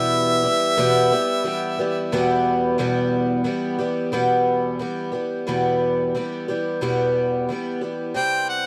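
Rock in E minor at 89 BPM, dusty and reflective, cut from a longer piece and built on a picked twelve-string acoustic guitar whose bright, boxy archtop tone and octave-doubled shimmer sit up front throughout. A clear harmonica with light vibrato and a smooth top carries the pop-style solo melody from the start to 2.5 seconds, then returns briefly at 8.2 seconds. The sound is dry and close, in the manner of a 1970s studio recording.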